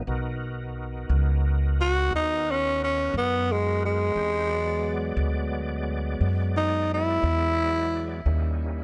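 Smoky and soulful, this short slow blues excerpt in 12/8 moves at 59 BPM in G# minor, with a growling, raspy tenor saxophone taking an up-front jazz solo from 1.8 s to 8.2 s, its scooped notes, soft attack and light vibrato giving the line a gritty voice. Beneath it, a pizzicato upright bass on gut strings sounds woody and thumpy, while a reedy tonewheel organ holds sustained chords through a slow rotary speaker and chorus vibrato, quieter in the mix. The harmony moves from a rootless G#m7 to E7 and then D#7, and the dry sound carries little reverb and a softened top end.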